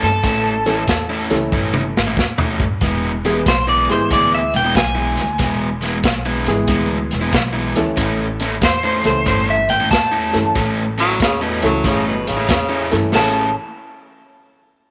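A lo-fi electric guitar through a small old amp carries the melody, its picked, slightly broken-up tone compressed and sitting high in the mix on this soulful, swaggering electric blues shuffle in A major at 93 BPM, swung in 4/4. Beneath it, a raw garage guitar picks out an overdriven riff, while a woody pizzicato upright bass anchors the low end. A crunchy breakbeat kit, saturated with dark cymbals and a tight kick, plays up front and throws in a fill from 1.5 to 2.8 seconds as the harmony moves from A to E before returning to A. An intimate baby grand piano, with audible action noise and short sustain, joins at 0.7 seconds. At 11.0 seconds a raspy, growling tenor saxophone enters with a second line full of vibrato, all set in a moderate spring reverb in this excerpt cut from a longer piece.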